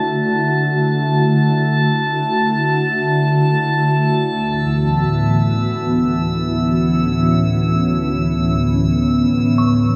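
A glassy, full-bodied FM pad sits up front, holding a sustained Aadd9/D chord in free time beneath a calm, drifting glass-harmonics texture of sine overtones, while a mellow tine electric piano slips in very quietly at 9.6 seconds in this weightless, luminous ambient fragment, tuned to A4 = 439 Hz and bathed in a vast cathedral reverb with a cassette-tape character.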